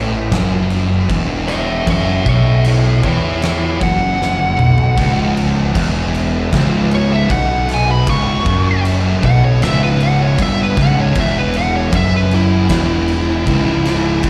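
A straight 4/4 stoner and doom metal groove, sludgy and brooding, rests on two thick fuzz guitar riffs, one in the background and one very quiet, beneath a growly, overdriven bass placed up front; an oversized low-tuned drum kit with a boomy kick, fat snare and gritty room sound drives it and adds a fill, while a dark fuzz lead guitar solo with slapback echo and delay comes in at 1.5 seconds and a bright, double-tracked tight distorted guitar riff joins at 5.0 seconds, heard as a live gig through the venue's PA with recital hall reverb.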